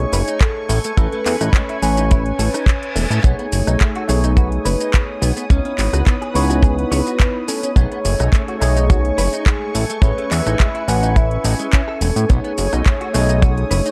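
A sunny, feel-good nu-disco excerpt opens with a bell-like tine electric piano pumping through a phaser, a lush, warbling unison pad, a fat sawtooth analog bass up front and a soft, round, octave-layered synth lead carrying the melody through chorus, phaser and analog delay, over chords moving among B13, Amaj9 and C#m9. A clean, direct-recorded electric guitar riff with ensemble chorus and 12-bit sampler grit sits in the background beside a house kit of handclaps, metallic hi-hats, rim clicks and shaker, while a dry, tight kick joins at 0.4 s. A brief electronic reverse cymbal appears at 2.5 s in a mix with little reverb.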